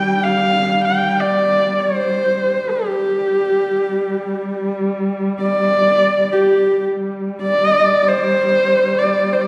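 From the first moment, a bowed horsehead fiddle sustains a focused drone on G3 while a second horsehead fiddle, husky and up front, sings a solemn, windswept melody between G4 and G5 with soft attacks, expressive vibrato and sliding portamento. This Mongolian folk passage moves in free time, and its opening phrase returns at 7.0 seconds. A wet concert hall reverb places the listener further back in the room, lending the warm horsehair tone a sense of open distance across the brief 9.5-second fragment.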